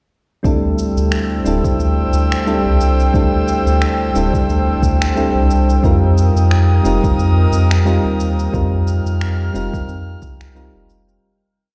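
A relaxed 4/4 groove at 89 BPM sets the pace from 0.4 seconds, with a soft electronic kick and a light lounge beat of electronic shaker and finger snaps, swung on the 16ths and sounding as if played back through a big sound system in a bare, large room. This short, smooth sunset chillout piece rests on a round, deep analog bass that sits up front in a dotted rhythm. Mellow electric-piano-like synth keys hold drop2-voiced chords with syncopated pushes, coloured by chorus, a low-pass filter and delay. Above them, an airy, breathy pad with a slow attack and long release sustains chords, also touched with chorus. The harmony moves from D9sus4 to F9sus4 at 5.8 seconds, and the whole piece fades out from 7.6 seconds inside a light digital ambience and large studio reverb.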